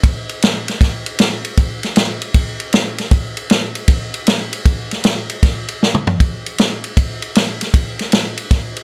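A vintage acoustic drum kit carries this short, gritty blues excerpt alone, swinging at 156 BPM in 4/4 with a swaggering, shuffling eighth-note feel. Punchy kick, a medium-tuned snare, toms and dark ride cymbal sit up front in a small, natural-sounding room, their rolled-off top giving the kit a warm, aged character under light reverb. A drum fill at 5.8 seconds leads into the repeat of the main section at 6.2 seconds.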